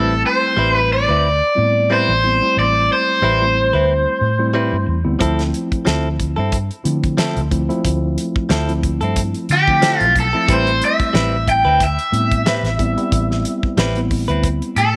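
A straight-eighth soul blues groove in 4/4 at 91 BPM with lightly swung sixteenths sets a smoky, soulful mood in A minor, moving from Am9 to Dm9 and back in this excerpt from a longer piece. A round, punchy, foam-muted bass and a mellow tine electric piano heard through its built-in speakers hold the ground beneath twangy, compressed stabs from a direct-recorded clean guitar, while a damped 70s drum kit with a fat snare and tight kick enters dry and up front at 5.2 s. Over it all, a bright, overdriven picked guitar carries the melody with spring reverb and slapback echo, resting between 4.9 and 9.5 s before returning.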